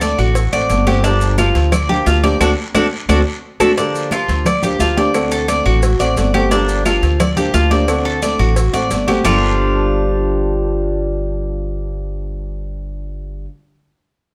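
Up front, a picked Cuban tres with metallic double strings plays arpeggios over a woody, thumpy gut-string upright bass in this nostalgic, danceable Cuban son and guajira piece in G minor at 175 BPM, while a fingerpicked flamenco guitar with audible finger squeak accompanies on the D7 to Gm7 changes. In the background sit high-tuned, damped congas, round low-tuned cowbell and bongos, raspy guiro, grainy saturated maracas and woody claves, with the band hitting an accent from 2.4 to 3.8 seconds. The percussion stops at 9.3 seconds, leaving tres, bass and guitar under light reverb until this cut from a longer piece ends at about 13.5 seconds.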